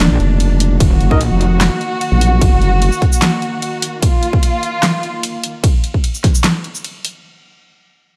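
Menacing and aggressive, this heavy wobble dubstep drop moves at 149 BPM in a half-time 4/4 feel, rooted in Eb minor and cut from a longer piece. A dark, woody string section holds bowed chords with light vibrato from the start until 5.6 seconds, pumping under sidechain compression, while a big-room dance drum kit of handclaps, hi-hat, ride, shaker and a huge overdriven snare runs from the start to 7.1 seconds. Two wobble basses sit up front: a metallic FM voice, saturated and chorused, opens the drop and lasts until 1.7 seconds, overlapping with a nasal, resonant vowel-sweep bass shaped by a formant filter, which enters at 0.2 seconds and carries on until 2.9 seconds. A punchy, tape-warm electronic kick joins at 0.8 seconds. A mellow brass ensemble fires one tight, classical-style stab through a digital delay, and the whole sits in a dark digital ambience.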